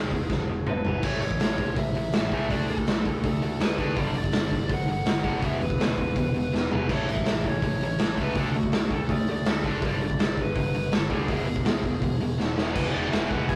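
A rough rehearsal-room sound with warm saturation and light reverb carries this rowdy, rebellious punk rock excerpt at 164 BPM, where an up-front garage drum kit with a punchy kick and rolled-off top drives fills at 0.3, 6.5 and 12.4 seconds beneath a dark overdriven lead guitar melody, an overdriven rhythm guitar riff and bright picked bass in the background, a very quiet scooped, distorted guitar riff joining at 1.0 seconds, and a very quiet sludgy double-tracked guitar entering at 12.7 seconds over chords moving from E through A, D and G.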